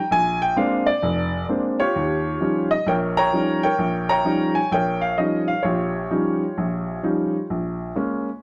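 Swung eighths at 130 BPM in 4/4 carry this sophisticated, playful solo jazz fragment in Eb mixolydian, cut from a longer piece, where a woody, natural upright piano sits up front with long sustain in a moderately reverberant large studio, moving from Bb9 to Eb9 as a new passage begins at 1.9 seconds and touching Bbm7 at 7.5 seconds.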